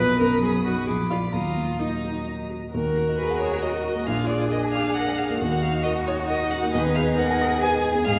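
A quick classical-period movement for piano quintet, cut from a longer piece, moving in a cheerful, spirited triple metre with a flexible rubato feel. A focused, vibrato-laden violin carries the melody over a cello second line with soft attacks and expressive portamento, while a second violin sits smooth and distant in the background and a rich bowed viola fills in the accompaniment. Up front, a dark, mellow baby grand piano with audible action noise anchors the texture, the ensemble placed further back in a wet scoring-stage reverb, and the music turns to a new section at 2.7 seconds.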